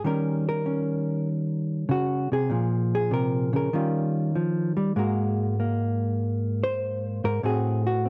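Solo jazz at 98 BPM in 4/4 with a swinging, sophisticated feel, this short excerpt features a hollow-body electric jazz guitar alone, dark, clean, fingered and compressed, sitting up front in a dry, close 1970s-style studio sound with light reverb as it moves through Eb7, Bbm, Eb9, Ab9 and Am6 across its 8.1 seconds.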